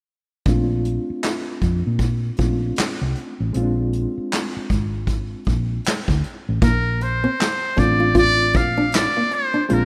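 R&B with a neo-soul lean, warm and relaxed, swung gently in four, cut from a longer piece and set in a lush hall with a rough home-demo character. A reedy electric piano with fast tremolo comps over a dark, round hollow-body bass and an up-front brush kit with punchy kick, snare, hi-hat and handclaps, while the harmony moves from Bbmaj7 to Bb7 at 3.5 seconds. At 6.6 seconds a muted trumpet, buzzy and breathy with a soft attack, takes the solo melody as a fingerpicked nylon-string guitar with fresh strings adds a second line.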